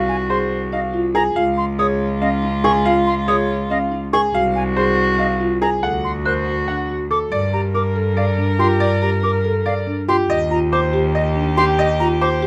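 This is a close, detailed recording with light reverb, capturing a short cut from a longer classical piece in a minimalist, pattern-based style. The mood is hypnotic and bright, moving in a straight 7/8 metre, and the harmony turns to a new centre at 7.3 seconds, settling on rich ninth chords. A brilliant, long-sustaining grand piano carries the melody up front, while a soprano saxophone with light vibrato sounds distant and roomy as it traces a lower second line. Marimba played with soft mallets adds woody, round arpeggios, and a concert flute with a pure, straight, tongued tone spins higher arpeggios from 0.1 seconds. A single bowed cello anchors the bass with a clear, smooth, even tone and gentle vibrato, sitting up front alongside the piano.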